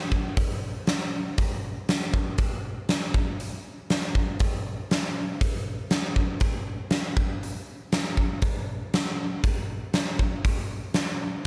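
A straight 4/4 rock beat at 119 BPM drives this brooding, dark fragment, where a big acoustic drum kit sits up front from 0.1 to 11.1 seconds, its tight kick, fat snare and hi-hat ringing through a bright stone room and a moderate concert-hall reverb with a 2.5-second decay.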